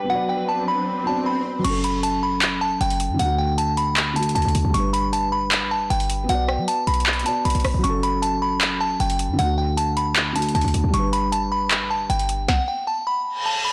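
Brooding and eerie, this half-time trap cut at 155 BPM sits in F# phrygian and moves through a dark cycle of Bm, F#m, D and G. It opens with a delicate, tinkling FM tine bell carrying the melody up front with a warbling chorus, over a felt-muted upright piano whose thick felt and audible action noise give it an intimate, mellow tone, while muted con sordino strings hold veiled, lush chords beneath a filter sweep and an electronic swell. At 1.6 seconds the strings drop out and a trap drum kit hits up front, with a hard-clipped kick, sharp snare, metallic hats, handclaps, rim clicks and crash, roughened by overdrive and 12-bit sampler grit. A short, punchy 808-style bass with a sine body and noise layer enters alongside it, with a fast attack and decaying notes beneath the groove. The beat and bass stop around 12.5 seconds, leaving the bell to ring alone until a reverse cymbal closes the passage at 13.7 seconds. 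The overall recording is blown-out and overdriven, set in a light reverb.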